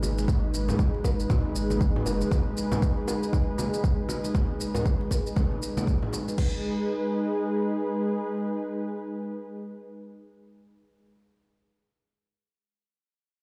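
Earthy and hypnotic, this swung 118 BPM afro house excerpt in G# minor pentatonic sets an up-front, smooth, detuned sawtooth pad holding a G#m chord with chorus and sidechain pumping over a round sine sub bass that drops out at 2.2 s, while a deep, tape-warm kick sits up front beside a layered electronic shaker and crash, bright distant congas and tight, high-tuned bongos in the background, all ringing in a large bare room until the drums and percussion stop near 6.5 s and leave the pad alone until 11.1 s.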